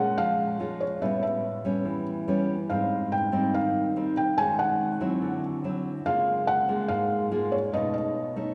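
A straight 4/4 bossa nova pulse at 143 BPM carries this intimate, melancholic fragment of a longer piece, where a dark, thick-felted upright piano with audible action noise sings the melody up front over a full-bodied, fingerpicked nylon-string guitar moving through chords such as Bbm7, Abmaj7 and Db6, all bathed in the long, wet reverb of a church.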